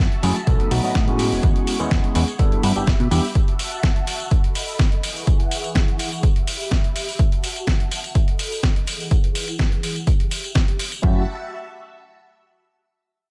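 A digital ambience surrounds this funky, nostalgic slice of filtered disco house, cut from a longer piece, with a filter sweep running through its first 11.0 seconds. At 125 BPM in a straight 4/4 and F# dorian, a swirling, vintage string machine holds sustained chords under phaser, ensemble chorus, sidechain pumping and a low-pass filter, cycling through B7, E69, G6 and F#m7. A punchy electronic kick sits up front, joined by a gritty, compressed sampler-style soul kit of hi-hat and medium-tuned snare, re-recorded in a small room, while a barely audible, band-limited tambourine part blends maracas and group handclap. A plucky sawtooth-and-pulse analog bass with detuned, decaying notes and a barky, overdriven tine electric piano played through a combo amp both pump with the sidechain and sit behind the low-pass filter. The bass and electric piano drop out at 3.2 seconds, leaving strings and drums, then return briefly at 11.0 seconds as the chords land on F#m7.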